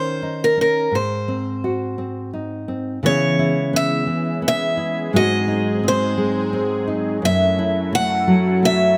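A boxy, parlour-sized steel-string guitar picks out the melody up front over a full-bodied nylon-string guitar fingerpicking deep classical accompaniment, opening this intimate, heartbroken acoustic folk-pop ballad at 86 BPM in a straight 3/4, in C# minor and tuned to A4 = 441 Hz. At 3.0 seconds an airy, detuned sawtooth pad with a soft attack, a noise layer and chorus enters beneath them, sustaining chords as the harmony moves through C#m7, G#7 and F#m7. Close, detailed microphones and light reverb keep this short cut from a longer piece sounding near and personal.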